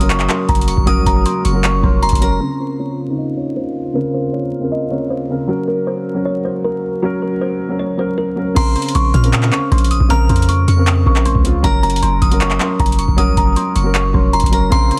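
Trap hip hop in an eerie, dark half-time feel, where a woody, hollow kalimba carries the low-pass filtered, delayed melody over an up-front, vintage-toned concert grand piano and a mellow brass section holding sustained chords in the background, while a crystalline FM synth bell adds a chorused second line, a deep sine 808-style bass sustains beneath, and a booming analog drum machine drives the beat with its deep kick, metallic hi-hats, handclaps and crash cymbal, the bell, bass and drums dropping out from 2.4 to 8.6 seconds under a filter sweep, in a dry, dense, heavily limited master dusted with vinyl crackle.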